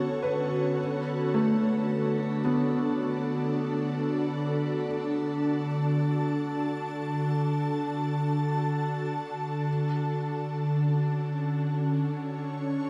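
Luminous and serene, this ambient passage drifts in free time, lifted from a longer piece. An ethereal, airy pad sits up front, holding sustained chords across its whole 12.9 seconds; its detuned sawtooth unison, slow attack and long release are thickened by ensemble chorus, built-in reverb and shimmer reverb. Alongside it, a felt-muted upright piano plays soft, mellow arpeggios with an intimate character, colored by tape echo and shimmer reverb. The piano drops out at 9.7 seconds, leaving the pad alone for the final moments. The whole scene is bathed in a cathedral-like wash of reverb with a long, lingering decay.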